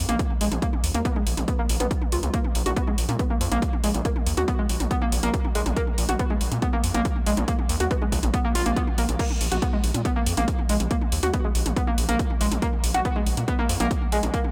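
A screaming, guitar-like overdriven synth lead carries the riff up front through this short cut from a driving, hypnotic peak-time techno track at 140 BPM, its distortion, tube saturation, subtle chorus and digital delay shaped by a filter sweep that runs across the full 14.5 seconds. Beneath it, a gritty, nasal, wave-folded synth bass and the lead both pump against an overdriven, heavy electronic kick, while a layered techno kit adds metallic hats, crash cymbal and toms with the same sidechain pumping. Light reverb and digital ambience frame the sound, with the harmony resting on Bb5.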